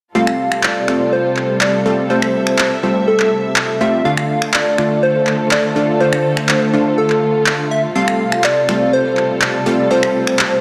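A catchy, punchy plucky unison lead carries the melody with dub echo over muted, veiled studio strings holding sustained chords, airy detuned supersaw stabs through digital delay, and up-front layered electronic finger snaps and handclaps, giving this uplifting, euphoric progressive house excerpt in F major at 123 BPM its glow as the chords move from Fadd9 to Dm and back in a moderate scoring-stage reverb.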